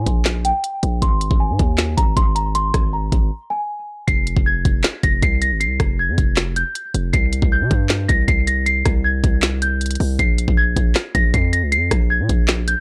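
A delicate, bell-like celesta melody, softened by a low-pass filter, opens this eerie, brooding half-time trap fragment over a heavy, aggressive distorted 808 bass, joined almost at once by an up-front trap kit of knocking kick, woody snare, crisp hi-hats, handclaps and rim clicks roughened with vintage 12-bit sampler grit, all in a dry, close sound, with a short break at 3.3 seconds before the harmony moves into darker minor territory from 4.1 seconds.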